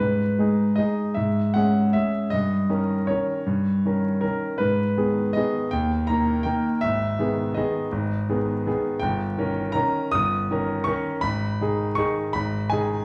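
A vintage character colors this recording, with vinyl crackle and a small room ambience sitting beneath a wet recital hall reverb that lingers for about 1.5 seconds. It is a classical piano waltz in G# minor, cut from a longer piece, moving in 3/4 at 161 BPM with uneven beats and a rubato feel. A concert grand plays solo throughout the 13 seconds, placed up front with a clear, smooth tone and a deep bass that reaches down to G1, while its upper register extends as high as D#6. The harmony keeps circling home, turning from G#m through C#m/G# and D#7/G before returning to G#m near 4.6 seconds, again at 6.8 seconds after a brief D#, and once more at 11.2 seconds. The mood is wistful and elegant, a graceful dance heard as if through the haze of an old record.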